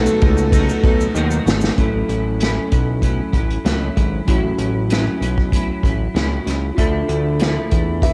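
Recorded on cassette in a small room at home, this hazy, nostalgic bedroom-pop excerpt opens with warbly, lo-fi synth keys carrying a brief melody and a grainy tube shaker, while a distant, roomy unplugged drum kit with dark cymbals and a punchy kick plays from 0.2 s, a fat, detuned analog bass sits up front beneath a dark, clean, picked electric guitar and a mellow tine electric piano in the background, and a woody kalimba rings in at 8.0 s.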